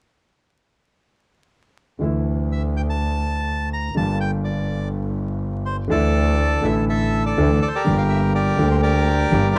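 Tango at 123 BPM in 4/4, played with a rubato feel, this short cut from a longer piece carries a dramatic, melancholic mood. A concert grand piano with a smooth, vintage tone and deep bass supplies the accompaniment, and a single bowed double bass, clear and boxy with vibrato and an airy, intense bow sound, holds the bass line up front; both begin at 2.0 seconds. A reedy, bright bandoneon takes the melody from 2.5 seconds, sitting close and prominent over the others. The harmony alternates between Dsus2 and G minor, and the second section arrives at 5.9 seconds. Close, detailed microphones and light reverb capture the playing in detail, while a layer of vinyl crackle adds an aged patina.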